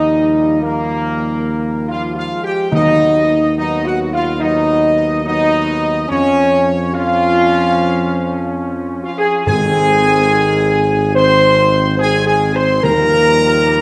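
Warm, roomy French horns hold sustained chords at the front of this triumphant, majestic classical brass passage in Ab major, moving at a stately 71 BPM in 4/4. A clear trumpet section carries the melody with light vibrato, bright trombones sustain chords in the background, and a mellow tuba anchors the bass. Round, soft-mallet timpani on calf heads sound at 2.7 seconds and again from 9.5 seconds, all set in the wet reverb of a scoring stage.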